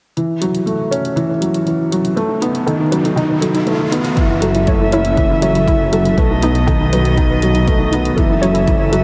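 A soft, felt-muted upright piano riff, intimate and up front in shimmer reverb and diffuse delay, opens this melancholic, moving piano-and-strings electronica excerpt over a small-room electronic hi-hat; an electronic riser joins at 2.0 s, followed by a warbly, lo-fi, detuned pluck arpeggio in the background, and at 4.2 s a dark sul tasto string quartet, an earthy bowed double bass section and a deep, layered kick arrive, with the strings, bass and pluck pumping inside a dreamy, hall-soaked mix.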